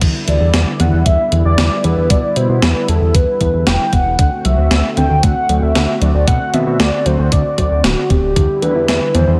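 A velvety, detuned synth lead with vibrato, chorus and digital delay carries the melody from 0.3 seconds in this moody, cinematic synthwave passage at 115 BPM in E minor, cut from a longer piece, where a brassy, airy pad with a filter swell and sidechain pumping sustains Em7 and D7 chords, a dusty, warbling lo-fi pluck plays very quiet arpeggios, a fat, up-front analog bass pumps with a filter sweep, and a thumpy electronic kick plays alongside a gated 80s drum machine's crash, hi-hat, gated-reverb snare and toms in a big room with light reverb.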